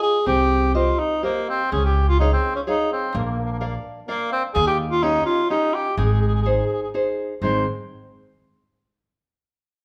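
A moderate recital-hall reverb gives this short cut from a longer piece an open, roomy setting. It is an Italian folk serenade in three, romantic and sunny in mood, with a straight feel. A warm tenor saxophone carries the melody up front, played in a classical solo style with vibrato and a slightly distant tone. Beneath it, a nylon-string guitar fingerpicks a deep accompaniment, complete with faint finger squeak, while an upright bass enters at 0.3 s with woody, steel-string pizzicato that sits prominently in the mix. A mandolin adds a very quiet, round second line on picked double strings. The harmony moves from Cm through Db, Bb and Eb7 before settling on Ab at 6.0 s, and the parts stop shortly before 8 seconds.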